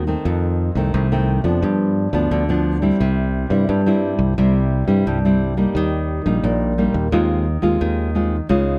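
A straight 4/4 samba and choro groove drives this nostalgic, lively cut from a longer piece, where a thumb-plucked, classical-toned nylon-string guitar and a growly, direct fingered electric bass sit up front together for the full 8.8 seconds, moving through F7, G7, C, Eb and Ab6/Eb under light reverb and close, detailed miking.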